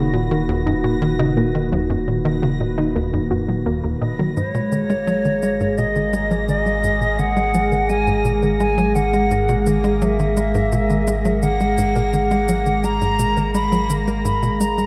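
Bathed in a wet concert-hall reverb, this excerpt of ambient, sequencer-driven space music in G# minor moves at 85 BPM with a mysterious, expansive air, as a sweeping, warbling resonant pad holds chords over a tight, punchy sequencer bass riff with tape echo, a deep, round sine sub bass and a bubbling stepped-filter texture high above. A detuned unison pluck spins arpeggios until 4.3 seconds, and from 4.4 seconds a pure, hollow concert flute carries the melody with vibrato, up front, while tape-warm electronic cabasa and bongos fade in beneath it. The harmony shifts at that point from D#m to a G#7 chord with its third omitted.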